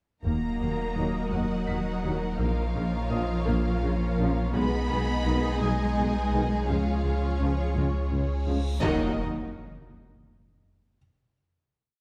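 A deep, round sine sub bass sits up front in this brooding, tense cinematic score, holding sustained low notes and a drone beneath a hybrid orchestral and electronic texture in Eb minor, moving slowly in 6/8 at 56 BPM. A lush violin section carries the smooth, vibrato-laden melody, a second violin section holds rich sustained chords in the background, and a distant studio viola section drives a rhythmic ostinato. Cellos double the tune at the octave, while a very quiet bowed double bass section and a mellow tuba reinforce the bass line, and a silky analog string pad with ensemble chorus sustains chords behind them. French horns with a soft attack and a roomy trombone section enter at 1.0 s with short accented and sustained chords, and a bright concert grand piano adds sparse single notes high above. The harmony moves from Ebm through Bbm, Abm/Cb and Db back to Ebm, and at 8.5 s a huge reverse cymbal swells into a low impact under the final chord, set in a dark production with moderate recital hall reverb.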